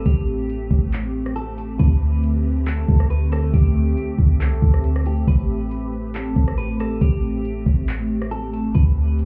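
Atmospheric cloud-rap hip hop in a hazy, melancholic half-time feel, this short excerpt pairs a boomy, sine-deep 808-style bass and an up-front electronic R&B kit of knocking kick, metallic hats, handclaps and rim clicks with a hollow, flute-like pad that warbles under ensemble chorus and sidechain pumping, while a dark, clean electric guitar melody drifts through phaser and tape echo over Am7 and D7sus4, all heard muffled as if through a club wall.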